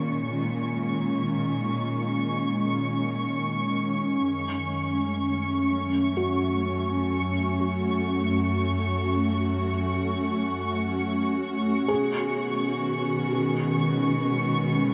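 Ambient in free time, luminous and weightless, this excerpt is built on an airy, detuned pad that sits up front with ensemble chorus and its own reverb, sustaining chords that move from Bbm to Gbm at 4.3 seconds and to Cb at 11.9 seconds, over a bowed cello section playing sul tasto with light vibrato in the low register. A twinkling granular texture with octave-up shimmer hovers high above throughout, and at 6.2 seconds a felt-muted upright piano enters in the background with soft arpeggios, its action noise audible through a diffuse ambient delay. The pad, piano and granular texture all fade in, and the whole is bathed in a huge, wet reverb with a long 7.8-second tail.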